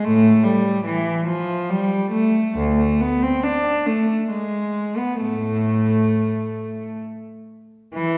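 Classical, baroque-style suite movement for unaccompanied cello in 3/4, flowing and grave with a rubato feel. A single bowed cello sits up front, its gut-string tone rich and reedy in period style, ranging from D2 to D4. The playing is bathed in a wet, hall-like reverb, and the recording is cut from a longer piece, lasting about 8.2 seconds.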